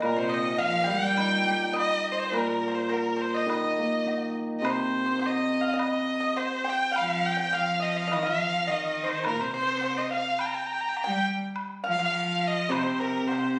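A straight, even two-beat pulse carries this tender, wistful passage of Chinese traditional chamber music, cut from a longer piece. A solo erhu leads up front with a clear, focused, close tone, bowed with vibrato and sliding portamento between notes. Beneath it, a hammered dulcimer rings out with a shimmering, warm resonance until 6.3 seconds. A pipa played with fingerpicks adds a dry, percussive line in the background throughout, while a bowed cello with its own vibrato offers a low second voice, dropping out at 1.8 seconds and returning at 7.0 seconds. A bright, acoustic woodblock sits quietly behind the ensemble, and the whole recording, captured on a phone in a moderate recital hall, carries added studio reverb and compression.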